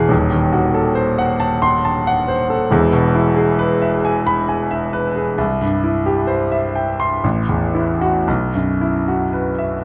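This romantic classical character piece for solo piano, a short excerpt cut from a longer work, carries a passionate yet hopeful mood. It moves in 3/4 at a flexible 54-71 BPM with rubato, centred in E major and tuned slightly high at A4 = 441 Hz. A clear grand piano plays alone for the full 9.8 seconds, ranging from a deep D#1 to B#5, with a polished, long-sustaining tone and audible action noise that lends an intimate feel. The harmony opens on a D#dim7, settles onto E at 2.7 seconds, then turns through C, A5 and a closing Bsus4. Close, detailed microphones keep the instrument present and up front, framed by a moderate recital hall reverb.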